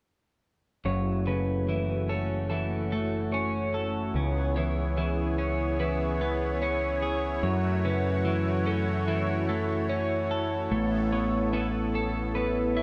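Cathartic and cinematic, this slow 73 BPM rock excerpt in F# minor sets a growling, overdriven picked bass entering at 0.8 seconds beneath a brassy, nasal analog pad with chorus, a clean, compressed twelve-string electric guitar playing up-front arpeggios, and a slightly broken-up electric guitar through a small old amp adding higher arpeggios, all captured as a band playing live in one room with moderate large studio reverb over chords moving from F#m7 to C#m7 and resolving on Aadd9.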